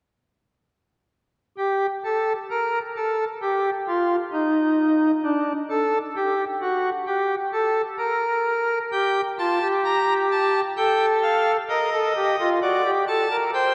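The recording sits in a dark, warm church acoustic, with a long, wet reverb that lets each note hang in the air for several seconds. This is a short cut from a baroque-style four-part fugue in G minor, moving at a slow 65 BPM in a straight 4/4 with a solemn, serious mood. A pipe organ's cornet stop carries the music alone, nasal and up front, in a romantic voicing with tremulant, its line ranging from D4 up to Bb5. The opening stretch, from 1.6 seconds, unfolds as a single unharmonised line before chords arrive at 8.9 seconds, moving from G minor through F9 to D over F sharp. The result feels grave and contemplative, a lone nasal voice sounding through a vast church space.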